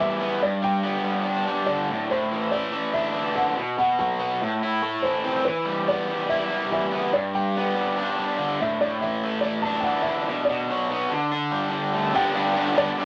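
Rock fragment with a bittersweet, restless mood, where a bright, overdriven, double-tracked electric guitar riff sits up front while a dark, woody upright piano with audible action noise and a slightly detuned, worn character carries the melody in the background, both parts taped in a booth with moderate ambience on a home cassette recording, as the chords move through G, Dsus2/A, Am and Em before landing back on G at 12.2 seconds.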